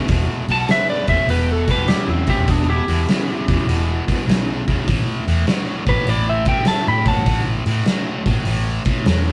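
A lightly driven lead guitar carries the melody, its dark, slightly broken-up picked tone sitting compressed as it comes in at 0.5 s and runs until 7.4 s. This short cut from a longer piece is blues rock in the power-trio mold with a southern rock lean, heavy and smoky, moving at 100 BPM in 4/4 with a swung eighth-note feel in E minor, tuned slightly sharp at A4 = 441 Hz. Beneath it, a bright, scooped, double-tracked distorted electric guitar picks a low riff from the very start, while a vintage fingered electric bass, foam-muted and round through an amp, fills the bottom and a big acoustic rock kit of hi-hat, punchy kick and medium-tuned snare sits up front with a dark, smooth, big-room sound. Tucked in the background, a nasal second lead guitar with a parked wah adds an overdriven line treated with analog delay over the same stretch as the main melody. The harmony holds on E minor before shifting to an A5 power chord at 4.9 s, all captured as a rough rehearsal-room recording with moderate studio ambience.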